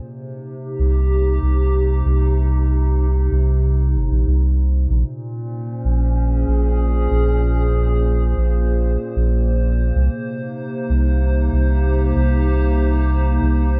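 Ambient dub with a deep, meditative mood, this short cut from a longer piece opens on a warbling, nostalgic tape-like pad holding dark, lo-fi chords that move from Cm7 to Bbm9 and back, softened by chorus and its own reverb. At 0.8 seconds a soft dub sub bass enters, round and sustained with a quick attack, sitting up front beneath the pad. A digital ambience surrounds the pair, giving the sparse arrangement a calm, spacious sound.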